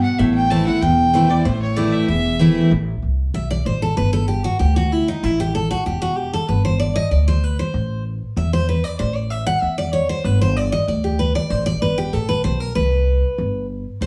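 A rich, biting fiddle opens this short bluegrass cut, bowed up front with light vibrato and carrying the melody alone among the leads until about 2.6 seconds. From 2.7 seconds the bright, full-bodied picked acoustic guitar takes the solo, having already been present from the start as accompaniment and staying up front to the end at 14.1 seconds. Underneath, a woody pizzicato upright bass joins at 0.2 seconds and holds the low end. The tune sits in A dorian at a straight, driving 191 BPM in 4/4, moving mostly between A minor and G, with a Gadd9 and a closing C5 near the finish. The mood is lonesome yet propulsive, set in a small room with moderate reverb that places the listener a little further back.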